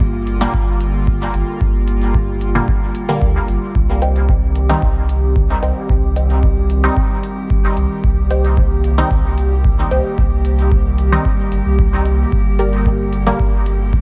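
Light reverb and a digital ambience give this dub techno excerpt a cavernous, deep atmosphere at a straight 112 BPM in 4/4, in C minor. A tape-warm analog kick and smooth, layered electronic hi-hats carry the groove, while a round sine sub bass with tube saturation sits low and mellow beneath them. Muted, detuned chord stabs with a filter sweep move through phaser, chorus and dub echo. An airy, breathy pad holds soft, nasal sustained chords, and an eerie, metallic FM drone with its own reverb and phaser hovers at the back. Both of these pump with sidechain, as do the stabs. The harmony shifts from G minor to C minor at 3.8 s, and just after, from 4.0 s, a lo-fi, wave-folded pluck riff enters, dark and dusty, warbling through chorus and dub echo, before the harmony returns to G minor at 12.3 s.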